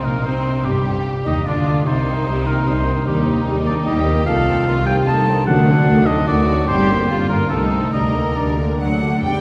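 This excerpt from a fast, dramatic Romantic movement for symphony orchestra opens with strings, oboe, horns and harp sounding together. A very quiet violin section carries the melody with vibrato, a clearer, more distant violin section adds a second line, and a close-miked, warm solo oboe traces its own line. Beneath them, an intense viola section supplies accompaniment, a background French horn section holds sustained chords, and a ringing concert harp plays arpeggios, while rich cello and double bass sections anchor the bass. At 148 BPM in 3/4 with an urgent, rubato feel, the music starts in C minor and moves into G minor at 4.3 seconds, with diminished and flat-nine dominant chords sharpening the tension. Very quiet timpani enter at 5.5 seconds, and an airy, crisp-attacked silver flute adds a brief second line at 8.8 seconds, all within a wet concert hall reverb.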